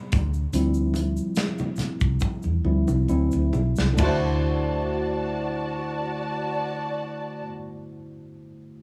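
A lightly swung 16th-note 4/4 groove slows through the opening of this smooth, cinematic stretch of lush 1970s-style soul, where a worn, slightly out-of-tune tine electric piano with overdrive and chorus takes the lead over round, foam-muted electric bass, a tight acoustic drum kit whose fill runs from 2.2 s, bright hard-handed congas and a grainy tube shaker tucked in the background, until, shortly after Dm11 gives way to D7, woody, vibrato-rich bowed strings enter at 4.0 s in a small, lightly reverberant room.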